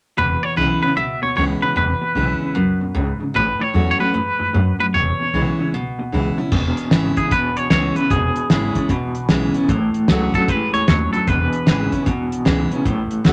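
A twangy, up-front electric guitar carries the melody in this rollicking, retro rockabilly excerpt. Its clean, compressed tone is colored by harmonic tremolo until it stops at 12.1 seconds. Beneath it, a bright, full-bodied steel-string acoustic guitar picks out the accompaniment, while a second electric guitar, played through a small old amp, adds a slightly broken-up riff with its own tremolo. A woody, thumpy upright bass with gut strings plays pizzicato throughout, and the swung groove moves between E6 and A6 chords. At 6.5 seconds the second section arrives with a dry, cloth-damped drum kit of crash, hi-hat, snare and kick, featuring a fat snare, tight kick, dark cymbals and a rolled-off top. A moderate club reverb sets the band in a club-like space.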